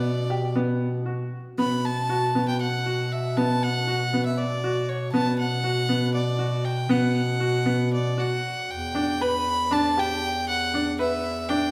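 In a straight 7/8 at 236 BPM counted in eighths, this restless, pensive piece of contemporary chamber music in B minor sets a close, biting violin melody high above worn grand piano arpeggios and a soft-attacked, mellow bass clarinet bass line, both violin and clarinet up front, all bathed in a moderate concert hall reverb as the harmony moves from a rootless Asus4 over B to B5 and then to Em7 at 8.7 seconds.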